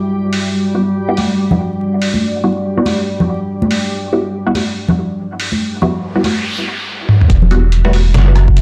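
Dark, lightly reverberant production with vinyl crackle frames this brooding, meditative deep dubstep excerpt in E minor at 142 BPM, swung and half-time, opening on an Emadd9 chord from a moody, detuned analog pad with chorus and vintage 12-bit grit, alongside a reversed, granular swelling texture. A muffled, pitched-down sampler-style trip hop kit sits up front under a filter sweep, joined by resonant, phased dub chord stabs and bright, hard-hand congas, both carrying dub echo, while an electronic noise sweep arrives at 5.9 s. At the drop at 7.3 s, a round, soft sub bass moves up front as an overdriven electronic kick drum sits in the background.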